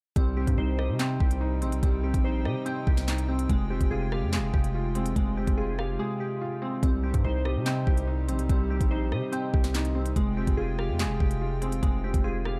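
The drill drum kit drives a half-time feel at 144 BPM in 4/4, with a knocking kick, sharp snare, crisp hats, handclaps and rim clicks sitting up front. Beneath it, a heavy, saturated 808-style bass with a fast attack and decaying tail adds an aggressive, distorted low end, moving between C minor and F minor add9 chords. A felt-muted upright piano supplies intimate, mellow accompaniment, its audible action noise and short sustain softened by a low-pass filter. Glassy digital keys trace bright, airy arpeggios through chorus, a filter sweep and tape echo, while a hollow, flute-like pad holds detuned chords in the background. The tense, dark mood of this minor-key drill passage, cut from a longer piece, is heightened by a break from 6.0 to 6.8 seconds in a dark, warm digital ambience.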